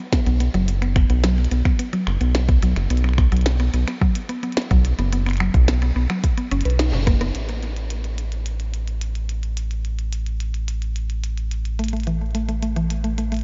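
A straight 4/4 IDM groove, glitchy and wistful, sets a deep, up-front electronic kick beside a glitchy kit of tiny snare, clicky hats, finger snaps and rim clicks over a round, dark analog bass, while a woody, mallet-like FM pluck with chorus and delay spins arpeggios until a band accent at 6.8 seconds and a drum fill at 7.1 seconds, after which the kick drops away and the pluck returns briefly at 11.8 seconds, all in a lightly reverberant, dull-topped mix cut from a longer piece.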